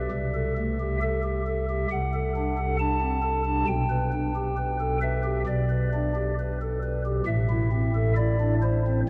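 A pipe organ's stopped flute plays alone from 0.0 to 9.0 seconds in this reverent, majestic chorale-style classical excerpt, its soft, hollow, mellow tone with a touch of chiff and baroque voicing sitting up front at an unhurried 67 BPM with a rubato feel in G major, moving through Am7/C, D7/C, G/B and Am while a wet cathedral reverb with a 5.2-second decay hangs around it.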